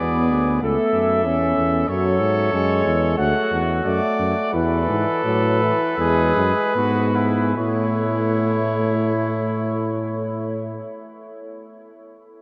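Elegant and stately, this short excerpt of a classical imitative canzona for brass ensemble sets a mellow, up-front cornet melody over a clear, vintage-toned flugelhorn second line, a warm euphonium accompaniment with light vibrato, and a dark, smooth-topped bass trombone anchoring the bass. All four play throughout, bathed in a huge, wet ambient reverb that places them in a vast, echoing space, with the cornet and euphonium sounding distant and roomy. The music gradually slows from 0.6 to 7.6 seconds, where a new section arrives on an A chord.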